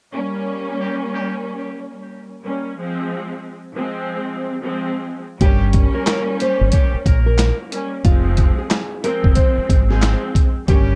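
Tough and reflective, this boom-bap hip-hop excerpt opens on a lush, cassette-tinged string section over Gdim and Fm chords with a brief nasal muted trumpet stab, then at 5.4 seconds a gritty, pitched-down sampler drum kit with thumpy kick and handclaps arrives alongside a round, punchy dub electric bass, a full-bodied fingerpicked nylon-string guitar melody and more delay-touched trumpet stabs, in a dark, dry production.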